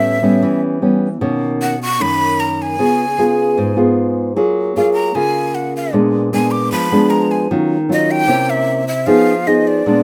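Melancholic and intimate, this bossa nova fragment in a straight 4/4 pairs a breathy, close-miked jazz flute carrying the melody, its crisp, chiffy attack, vibrato and unsteady delivery sitting up front, with a thumb-plucked classical nylon-string guitar that supplies a warm accompaniment. Both parts play throughout and share a plate reverb, and the guitar sits a touch louder than the flute. The harmony drifts through rich extended chords such as Bmaj9, Ebm9 and C7b9, all captured in a rough home-demo mix with moderate room ambience.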